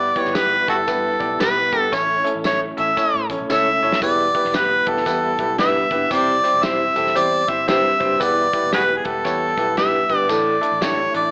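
A warm, up-front harmonica carries the melody over a bright, slightly detuned upright piano, a mellow tonewheel organ with chorus vibrato and slow rotary speaker, and a dark, foam-muted electric bass in this joyful, uptempo 1960s-style soul excerpt at 115 BPM with a swung feel, as a soul drum kit, jingly tambourine and a slightly broken-up electric guitar playing stabs through a small old amp join almost at once, a drum fill leads into a breathy, whispered baritone saxophone riff at 4.0 s, and spring reverb with an AM radio sound gives the whole an aged, intimate glow.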